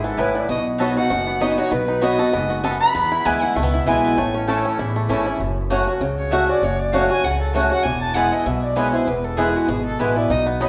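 Bluegrass at a joyful, lively 196 BPM in 4/4 with a swung eighth-note feel, cut from a longer piece and moving through B, E, A, F#m and E chords. A dark, nasal, distant fiddle carries the melody with light vibrato alongside a bright, twangy banjo played with fingerpicks, which drops out at 5.4 seconds and returns briefly near 10.3 seconds, while an up-front, boxy picked swing-style guitar with audible finger squeak and a thumpy gut-string upright bass hold down the accompaniment. A mellow mandolin adds double-string stabs from 0.2 seconds, and the whole ensemble sits in the wet reverb of a recital hall with a soft, rolled-off top end.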